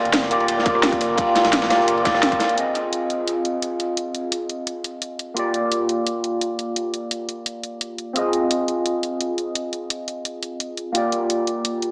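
Lush and soulful, this short cut from a longer liquid drum and bass track moves at 172 BPM in 4/4 with a straight feel, set in F dorian as the harmony shifts between Gm7 and Fm7. Throughout, the barky, overdriven tine electric piano plays through a combo amp with phaser and analog delay, alongside an up-front produced kit with hi-hat, rim click and a cracking snare soaked in dub echo. It opens on a drop, where a deep, full sub bass with an octave sits in the background beneath a dark, saturated breakbeat kit with dark cymbals, a rolled-off top and a medium-tuned snare, plus a tight, layered electronic kick. The whole band hits an accent at 2.2 seconds, and the sub bass, breakbeat kit and kick fall away by 2.5 seconds. From 2.6 seconds the second section carries on with the electric piano and the produced kit. The mix is echo-heavy, with wet spring reverb and a small-speaker sound.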